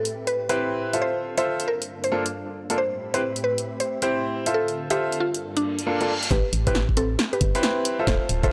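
A dry, gritty hardware recording with light reverb carries this moody, bouncy excerpt of two-step UK garage at 136 BPM in A minor, swung on the 16ths, where a woody, chorused mallet-like synth pluck carries the melody over silky string-machine chords that pump and sweep through a filter, with overdriven hi-hat and punchy snare from an analog drum machine and brilliant baby grand piano stabs up front, until a reverse cymbal and riser arrive at 5.7 s and a hollow, organ-like FM bass and a layered, knocking electronic kick enter at 6.3 s for a build-up with a drum fill and a filter sweep on the pluck.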